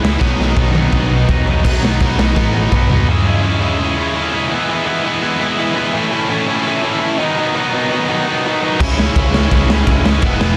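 This upbeat, rebellious punk rock excerpt at 168 BPM opens with a raw garage drum kit full of fills, a growly overdriven picked bass and two double-tracked guitars: a tight, distorted one up front and a crunchy overdriven one in the background. At 3.1 seconds the tight guitar carries on alone through C#m, E, A and B, before the punchy, saturated drums, bass and crunchy guitar return at 8.8 seconds on C#m. Light reverb and a dense, heavily limited modern master keep the sound gritty and in your face.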